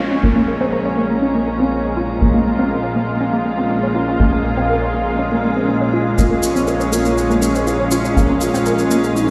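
Hypnotic and dramatic, this melodic techno excerpt at 121 BPM in Bb minor rests on a Bbm7 chord, with a lush, warbling unison pad up front, a tight, detuned sequenced synth arpeggio under a filter sweep with chorus, phaser and tape echo, a punchy, saturated sequencer bass, a cloudy granular pad, a tense, string-like drone in the background, an electronic downlifter ending at 2.2 s, and, from 6.2 s, a mellow portamento lead with 12-bit grit and dub echo beside a grainy tube shaker, all heard through a stone room on a big sound system with lossy artefacts.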